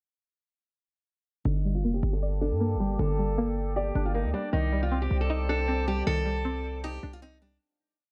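Light reverb and a digital ambience wrap this short, echo-heavy trap and hip hop piece, a brooding, melancholic breakdown in G minor at 156 BPM with a half-time feel. A boxy, picked steel-string acoustic guitar carries a looping melody up front, its fresh strings catching a little finger squeak, passed through a low-pass filter and analog delay. Beneath it, a twangy, string-like resonator pluck plays a rising and falling arpeggio in eighths, repeated like a sampled loop and colored by chorus and phaser. A punchy 808-style bass sits up front with long sub-bass notes and pitch slides, while a glassy, ethereal FM pad joins at 2.2 seconds with sustained chords in the background. The harmony moves from G minor to C minor add nine, a filter sweep runs through the whole piece, and a fade-out begins at 6.1 seconds before it closes at 7.6.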